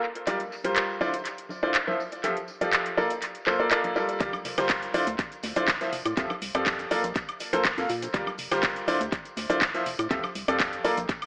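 A straight 4/4 groove at 122 BPM drives this soulful, bittersweet piano house excerpt in G dorian, tuned to A4 = 443 Hz. It opens with a house drum kit of metallic hats, handclaps, cabasa and woodblock sitting up front with tape echo, while hard-handed tambourine and congas sit in the background. A clear, woody upright piano carries the riff from the start, up front with short sustain, sidechain pumping and tape echo, moving through Gm7, Dm9, Fadd9 and Bbmaj7. The drop lands at 4.2 seconds, when a punchy, tape-warm electronic kick enters alongside a hollow, organ-like FM bass with fast attack and dark decay, pumping under the sidechain. At the same point a very quiet gated 80s kit adds hi-hat, shaker and a medium-tuned snare from an airy stone room. The mix is echo-heavy, with moderate spring reverb, small room ambience and an AM radio sound.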